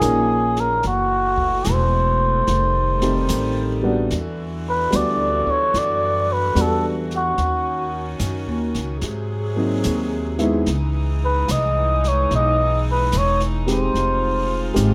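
Swung eighths in 4/4 carry this tender, romantic jazz ballad, a short cut from a longer piece, with a brushed drum kit and a woody, up-front pizzicato upright bass underneath a dark, mellow baby grand piano. A cup-muted trumpet leads the melody up front, veiled and breathy with light vibrato and a raspy, growling edge, until it drops out at 14.7 s. Behind it, a distant string section holds soft, floating bowed chords through shifting extended harmonies in a light reverb.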